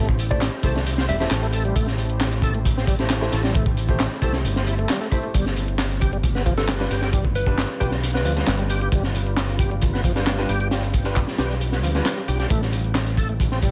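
A straight 4/4 breakbeat groove at 134 BPM drives this swaggering, raw excerpt in A minor, pairing a crunchy, up-front acoustic kit of tight kick, high-tuned snare and hi-hat with an overdriven electronic garage kit of handclaps and hi-hat, while an amped, overdriven picked electric bass sits up front. A thick tonewheel organ riff churns through slow rotary speaker, chorus vibrato, tube saturation and dub echo, with clear, short grand piano stabs in the background and a deep, moody, very quiet ambient pad sustaining chords beneath as the harmony moves from Am7 to G7 at 5.3 seconds. A round, warbling FM synth lead with a telephone-filtered tone and dub echo appears in the background in brief phrases at 0.3 and 6.6 seconds.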